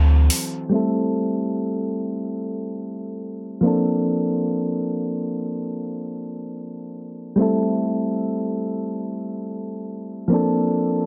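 Round, warbling electric-piano-like synth keys with chorus sit up front in this late-night, longing contemporary R&B fragment in free time and A phrygian, moving between Am7 and Bbmaj9 under a filter sweep from 0.7 s onward, while a metallic electronic hi-hat appears only briefly at 0.3 s, the whole set in moderate plate reverb within a dense, heavily limited modern master.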